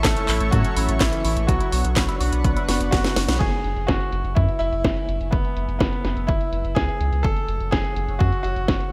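Italo disco at 125 BPM with a melodramatic, bittersweet mood, this clip sets a brilliant, polished grand piano melody over a round analog bass, a punchy overdriven electronic kick and a tape-toned house kit of cracking snare, handclaps, hi-hat and crash, with a lush detuned unison pad filling the background and very quiet, brassy synth stabs, while a twangy envelope-filtered electric guitar with phaser and delay plays arpeggios until 3.3 s, where a drum fill and band accent lead into the second section.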